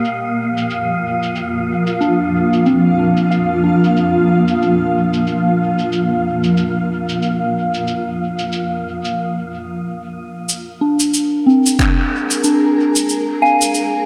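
Deep and meditative, this ambient dub fragment moves at 92 BPM in 4/4 with a swung sixteenth feel, as a blurred, detuned granular cloud pad holds sustained chords from Bbsus4/F and a soft FM synth bell spins mellow arpeggios through chorus, phaser, tape echo and a low-pass filter, both parts carrying a filter sweep until 10.5 seconds. Filtered cabasa and finger snaps with dub echo sit behind them, while a dark, breathy wind-like noise texture lingers on F5 until 9.2 seconds, when a short break arrives. After the shift to Fmadd11 at 10.5 seconds, a punchy electronic kick lands briefly at 11.8 seconds, all within an echo-heavy mix bathed in wet spring reverb.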